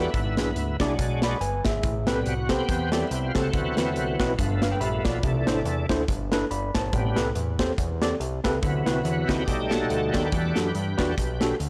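A bright, shouting tonewheel organ leads this hopeful, soulful uptempo gospel excerpt at 141 BPM, its full sustained chords carrying key click, chorus vibrato and a slow rotary speaker with light overdrive, while a worn, slightly out-of-tune tine electric piano accompanies and slips in a brief fill at 4.4 seconds. A fat, thick analog bass with a detuned sawtooth edge sits under a punchy, polished acoustic drum kit of kick, medium-tuned snare and hi-hat, all swinging in 4/4 through chords like Am9, D13 and C69 before settling on Em11. The whole recording is blown-out and overdriven, with a touch of small-room reverb.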